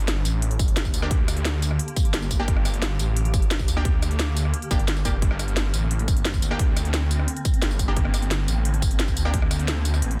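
A thick, detuned sawtooth bass sits up front in this dark, futuristic slice of technical drum and bass, its chorused, overdriven tone pumping against the beat from 0.0 seconds, rooted on G minor at 175 BPM in a straight 4/4. A produced drum kit of cracking snare, crisp hi-hats, rim clicks and tambourine enters at 0.1 seconds, and a punchy, tape-warmed electronic kick layers in at 0.6 seconds, all given a touch of studio reverb. From 1.0 seconds a bold, bright synth stab in the manner of an orchestra hit cuts through, built from layered sawtooth voices with a noise layer and a quick filter pluck, colored by cassette tape, delay and its own reverb. Behind it all, a swarming, tense drone of sustained chords evolves slowly with a granular, wave-folded texture, pumping in the background. The mix is dense and heavily limited, with a dry, modern finish to this section cut from a longer piece.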